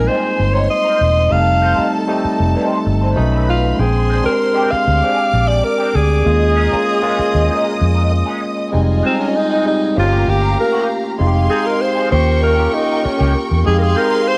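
Soul in F minor at 97 BPM, bittersweet and cinematic, this excerpt features a breathy, intimate alto saxophone carrying the melody up front with slapback echo, stepping into a solo at 8.7 s, while a lush bowed string section traces a smooth second line. A barky tine electric piano supplies bright, clean accompaniment, a dark, foam-muted fingered electric bass sits round and punchy until 13.9 s, and a twangy, slightly broken-up electric guitar plays a lo-fi riff in the background through wah and ensemble chorus. The whole band sits in a moderate echo chamber, moving from jazzy extended chords like Abmaj9 and Bb13 into a darker Fm7 to Eb7 progression for the closing section.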